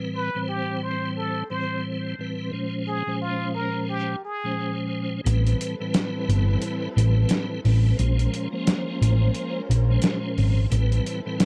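Boom-bap hip hop at 88 BPM with a swung 16th feel, moody and reflective, this excerpt opens on a piping tonewheel organ with key click, chorus vibrato and fast rotary speaker, colored by cassette tape, while a brilliant, forceful plunger-muted trumpet plays a jazz-style wah-wah line with digital delay until 4.8 seconds, over Am9 and Bbm9 chords. From 5.2 seconds a lush, dark bowed string section holds expressive sustained chords, and at 5.3 seconds a gritty, pitched-down, compressed sampler-style kit of hi-hat and medium-tuned snare arrives with a round, hollow-body picked electric bass sitting low and up front. The production is dark and close, with little reverb.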